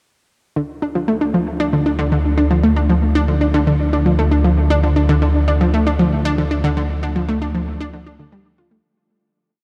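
Cosmic and hypnotic, this short piece of ambient, sequencer-driven space music moves at 116 BPM in a straight 4/4, set in D minor with tuning at A4 = 441 Hz. An analog pluck carries the riff from 0.6 s, a bright, up-front voice built from detuned sawtooth and pulse waves with a noise layer, its filter pluck giving each note a fast attack and short decay between D3 and F4. The pluck runs a repeating 12-step loop that drifts against the bar, dressed in chorus and analog delay. Beneath it, a fat, thick analog bass holds a sustained D2 root, its detuned sawtooth tone shaped by a filter sweep. Both parts sit in one long section inside a huge, wet reverb with an 8.2-second tail, and the production is dark and warm. A fade-out begins at 6.1 s and carries the piece to its close at 8.8 s.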